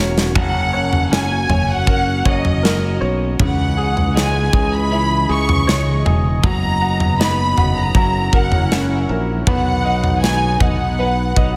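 A rich, bowed violin section carries the melody up front, its focused vibrato lending a heartfelt lift to this emotional pop ballad in B major, moving at 79 BPM in a straight 4/4. Beneath it, a clear concert grand piano with deep bass and short sustain plays accompaniment touched by slapback echo. A twangy, compressed twelve-string electric guitar picks arpeggios in the background through analog chorus and its own slapback echo. A vintage analog pad of detuned sawtooth tones holds smooth, warbling sustained chords with a slow attack and chorus, while a growly, punchy fingered electric bass sits bright and direct at the bottom. The acoustic drum kit, with a tight kick, medium-tuned snare and toms, opens with a fill and stays forward with a small-room character. The harmony moves through F#, C#madd9, B/F# and F#7 to B, a grand piano fill arrives at 11.4 seconds, and a moderate scoring-stage reverb gives the mix a big arena sound in this short excerpt cut from a longer piece.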